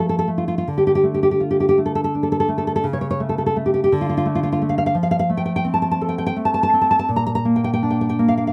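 Rubato and uneven in a slow 6/8 at 56 BPM in dotted quarters, this melancholic, wistful romantic excerpt for solo nylon-string guitar sits up front with a dark, woody tone from old, thumb-plucked strings, ranging from Bb2 to Bb5 over chords moving from F through Dm, A/C#, D5 and back to F before reaching Bb, captured by close, detailed microphones with little reverb and tuned slightly low to A4 = 438 Hz.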